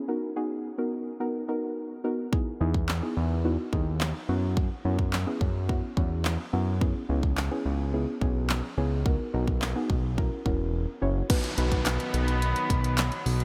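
Lightly reverberant and punchy, this summery, upbeat dance-pop excerpt at 107 BPM in B major opens on a deep, mellow, nasal chord stab with chorus and sidechain pumping. At 2.3 seconds an up-front, layered electronic pop drum kit with a fat snare joins, followed at 2.6 seconds by a thick, detuned sawtooth analog bass that also pumps. The drums then drop out briefly, and at 11.3 seconds soft, floating bowed strings arrive alongside a background downlifter, with a very quiet, crisp group handclap following at 11.9 seconds.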